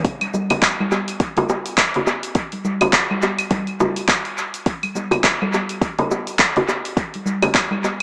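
Downtempo groove at 104 BPM in 4/4, with a 16th-note swing that gives the meditative, mystical mood a gentle lilt across this short cut from a longer piece. A deep electronic kick sits up front, layered and produced, and drops out at 7.7 seconds. Alongside it, a deep house drum kit of claves, handclaps, shaker and dark hi-hats carries a dub echo. Congas and bongos enter at 0.2 seconds, played with hard hands and captured close so their acoustic skins ring out. A wet spring reverb and digital ambience wrap the echo-heavy mix, which keeps a boxy, small-speaker character that adds to its hazy, trance-like pull.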